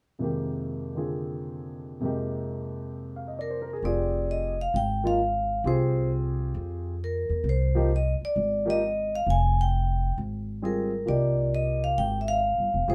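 Modal jazz in F dorian, this searching, intense passage swings its eighth notes at 132 BPM in 4/4 and is cut from a longer piece. A concert grand piano opens at 0.2 seconds on an Fm11 chord, its warm accompaniment reaching down into deep bass. The vibraphone, played with medium mallets and the motor off, enters with the melody at 3.4 seconds, its metallic, ringing tone sitting up front. A pizzicato upright bass joins at 3.8 seconds, woody and thumpy on steel strings, anchoring the low end as the music moves into its second section. Piano, vibraphone and bass all sit close and present, wrapped in light reverb.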